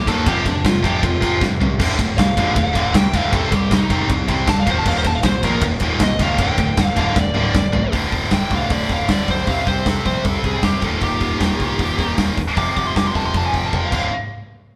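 Relentless and epic, this heavy metal excerpt drives forward in a straight 4/4 from a longer piece, its chords moving through minor and power-chord shapes in a dark modal color. A high-gain lead guitar with a dark, distorted tone carries a solo across the whole 14.1 seconds, climbing as high as D6. Beneath it, a bright, picked rhythm guitar sits up front with a heavy riff in the low register, joined by a second high-gain guitar riffing in the background. A growling, overdriven picked bass adds grit low in the mix, while a big acoustic drum kit, dark and smooth with a tight kick and medium-tuned snare, pushes from the front with cymbals and toms, breaking into fills around 1.4, 7.2 and 13.7 seconds. The band sounds like it is playing live together in a stone room, with a moderate reverb giving the whole performance a sense of space.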